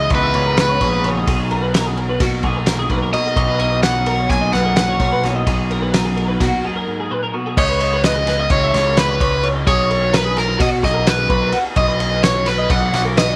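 Playful and wistful, this fragment of math rock and midwest emo races along at 257 BPM in 9/8, with an up-front, warm overdriven lead guitar carrying the melody through tape echo, bright, twangy twelve-string electric guitars supplying chorused arpeggios and spring-reverbed accompaniment that drops out at 7.6 seconds after a break, a growling, overdriven picked bass, and a loose indie drum kit with a fat snare, punchy kick and dark cymbals pumping in a studio room, moving from C#m9 and Bmaj7 to C#7sus2.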